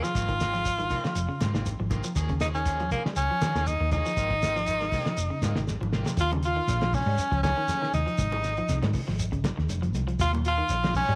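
A small-room sound with light reverb frames this driving, funky afrobeat excerpt at 120 BPM, cut from a longer piece. An edgy, forceful tenor saxophone leads up front with vibrato and scooped notes over a cloth-damped, thuddy drum kit with a fat snare and tight kick, a grainy shekere, bright thin-skinned congas and a dark, round hollow-body bass, while two twangy, slightly broken-up electric guitars sit in the background, one on arpeggios and one on stabs with subtle chorus that stop at 6.1 seconds. After a drum fill, a clear, smooth-topped second tenor saxophone joins in the background at 6.2 seconds as the harmony moves between Ab and Eb chords.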